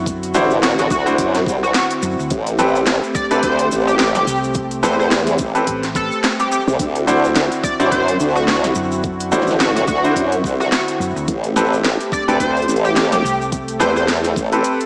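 A smooth, detuned analog pad with 12-bit sampler grit and sidechain pumping opens this swaggering, playful glitch hop excerpt alongside a round, punchy hollow-body electric bass, soon joined by a knocking electronic kick, a drum kit with a cracking snare and crisp hats, and a grainy egg shaker in the background. From 0.3 s, worn, brilliant piano stabs with audible action noise and tape echo pump over a saturated, up-front formant-sweep wobble bass. From 0.6 s, an edgy, tearing sync lead with vibrato and analog chorus carries the melody over D9 and Am9 chords, all riding a swung 16th-note feel. The whole mix is dreamy and soaked in lush hall reverb, with a small-speaker character.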